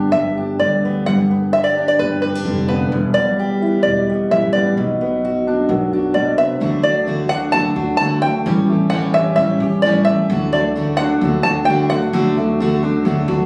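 Nostalgic and warm, this indie folk passage at 130 BPM in 4/4 carries a twangy, plunky open-back banjo melody up front over upright piano arpeggios and a thumpy, woody pizzicato upright bass. A full-bodied fingerpicked steel-string acoustic guitar accompanies until 6.6 s, when a darker picked steel-string guitar with old strings takes over as the chords move from G, Em and Bm to D and A7. The sound is a phone recording made in the room, with a moderate club-like reverb around the players.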